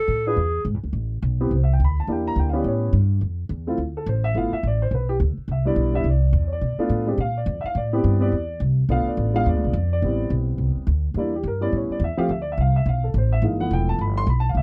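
Clarinet stands out first, though only for a moment: a warm, subtoned solo line with light vibrato and scooped notes sounds between G#4 and A4 before dropping out at 0.7 seconds. This short cut from a longer piece is small-group swing and bop jazz in A minor, moving at a brisk 212 BPM in 4/4 with a moderate swing on the eighth notes, and the mood is swinging yet moody. The upright bass plays pizzicato from 0.1 seconds, its woody, thumpy steel-string tone sitting up front in the low register. A dark upright piano enters at 0.3 seconds with mellow, natural accompaniment and long sustain, covering a broad span from E3 to C6. The harmony cycles through rich changes such as Am9, Em7b5, A7, Dm7, G13 and Cmaj9, with a tense E7b9 leading back to the top of the form around 10.0 seconds. The sound is dry and close, like a 1970s studio session with little reverb.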